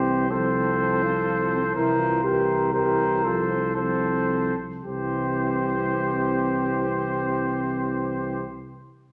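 Triumphant and warm, this short classical brass quintet passage moves in a straight 3/4 at 107-125 BPM in C major, easing into a slowdown from 1.0 to 4.8 seconds. Two trumpets lead the texture: one carries the melody up front with a mellow, distant vibrato, while the other sings a second line with a smooth top and light vibrato. A dark French horn and a close-miked euphonium, the latter set in the background, fill out the accompaniment, and a tuba anchors the bass with a mellow tone and light vibrato. The harmony alternates between F over C and C7 before settling on C major at 4.8 seconds, where the music opens into a new section. A generous recital hall reverb gives the ensemble a roomy, resonant glow, and the clip is cut from a longer piece.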